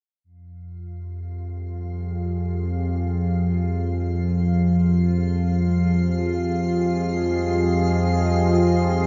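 Unsettling and ominous, this short excerpt from a longer dark ambient drone piece drifts in free time around F minor, resting on a single Fmadd9 harmony. An up-front analog drone enters at 0.7 seconds, spanning F2 to F3 with a warbling, vintage sawtooth and pulse-wave tone that evolves through pulse-width modulation and a resonant edge, softened by chorus. At 1.3 seconds an icy glass pad appears high on F5, airy and crystalline, set back in the mix and washed in chorus, built-in reverb and shimmer reverb. A deep, moody ambient pad follows at 1.4 seconds, holding sustained chords between F4 and Eb5 with a mellow, detuned unison sound and a sub octave beneath, fading in under its own chorus, built-in reverb and shimmer. The whole sits in a huge ambient reverb with a long 8.4-second tail, and the sound is darkened at the top, giving a hazy, enveloping atmosphere.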